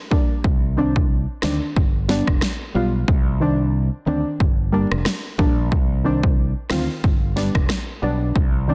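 A punchy, up-front deep house drum kit leads this bouncy, sultry dancehall excerpt at 91 BPM in C minor, with a swung 16th feel, its layered electronic kick, rim click and fat, tape-warm snare starting at 0.1 seconds. A warm, direct fretless electric bass holds the low end from 0.4 seconds, while a dark, detuned chord stab with a fast attack and ring-modulated edge pumps through sidechain compression and chorus, cycling between Cmadd9 and G or Gm. Light reverb surrounds a dense, heavily limited modern master.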